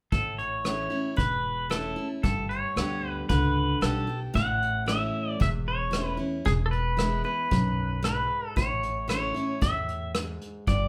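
Easygoing and nostalgic, this honky-tonk and classic country excerpt moves at a straight 114 BPM in A major, with an up-front, twangy pedal steel guitar carrying the sliding melody over a bright, full-bodied picked acoustic guitar with audible finger squeak, a woody, thumpy pizzicato upright bass, and a vintage brush kit with a punchy kick, hi-hat and rim click in a small pumping room, all set in moderate studio reverb.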